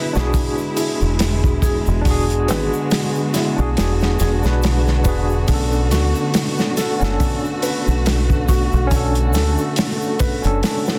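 Trip hop at 70 BPM with a melancholic, dark mood, this excerpt sets a tremolo-laden tine electric piano with tape echo and sampler grit over dark bowed strings with vibrato and portamento, a soft felt-muted upright piano arpeggiating in the background, a faint egg shaker, a round, punchy dub bass that enters at 0.2 seconds, and a crunchy, saturated breakbeat kit up front, all moving from E7 to Bm7 at 5.5 seconds in a dense, heavily limited mix.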